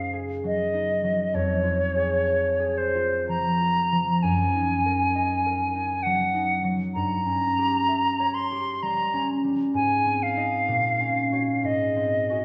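Unhurried and rubato in 3/4 at 64 BPM, this serene, lyrical romantic classical duo in Db major, cut from a longer piece, sets a pure silver concert flute, played with vibrato, singing the melody from C5 to C6 over a mellow, ringing, fingerpicked concert harp, both up front yet heard from further back in a wet recital hall, as the harmony drifts from Ab7/Gb through Gdim7 to close on Ab7 at 11.6 seconds.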